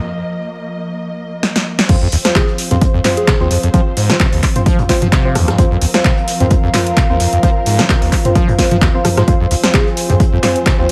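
Driving and gritty, this 130 BPM acid house passage in F minor with a light 16th-note swing opens on a break of muted, veiled strings and a warbling, nostalgic pad, until an overdriven analog drum machine fill at 1.4 seconds leads into the drop at 1.9 seconds. There an up-front punchy kick, a squelchy, resonant sawtooth acid bass riff with filter sweeps and tape echo, deep nasal chord stabs, and a very quiet brushed jazz kit join the sidechain-pumping strings and pad, while a round, keys-like FM synth lead touches Ab4 briefly in the background above a faint mains hum.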